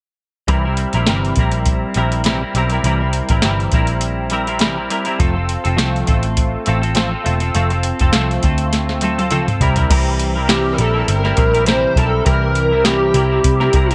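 A soft vintage rhythm box sets a laid-back, lightly swung 102 BPM groove in 4/4 with a deep kick, crisp snare and metallic hats, entering together with a round, punchy foam-muted picked bass and an up-front, clean semi-hollow guitar whose analog chorus adds a warbly pitch drift over C7 and F; after a drum fill at 8.7 s, a dark, overdriven slide guitar takes the melody at 10.5 s with ensemble chorus and slapback echo, all in a lightly reverberant room in this nostalgic indie bedroom-pop excerpt cut from a longer piece.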